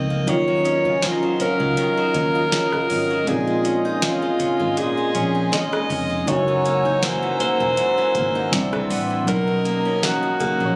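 A booming analog drum machine with a deep kick, crisp snare and metallic hats, roughened by 12-bit sampler grit, sets a lightly swung 80 BPM groove from 0.3 seconds in this longing, sensual contemporary R&B fragment, as a round, foam-muted electric bass, a bright fingerpicked parlour acoustic guitar with finger squeak, chorused felt-like synth keys and a hollow, flute-like pad frame a clear, up-front alto saxophone melody played in subtone with digital delay, while a very quiet pluck adds texture over Ebm9, Bbm11 and Gb13 chords, the whole mix sounding as if caught on a phone in a club-like room.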